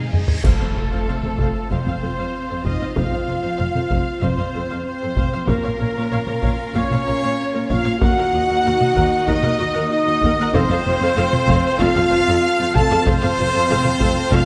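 Dark and dramatic, this epic orchestral film-score excerpt opens with a huge reverse cymbal and impact and a taiko fill, then at 0.4 s dry clash cymbals and concert bass drum mark the first chord as heavy-sticked taiko drums press on beneath a mellow French horn section, bright trumpet stabs and a pure, very quiet flute ensemble, while two bowed violin sections carry the melody and a second line over a focused viola section, rich sustained strings in the background, an expressive cello section and a woody double bass section, with a moderate scoring-stage reverb around the orchestra.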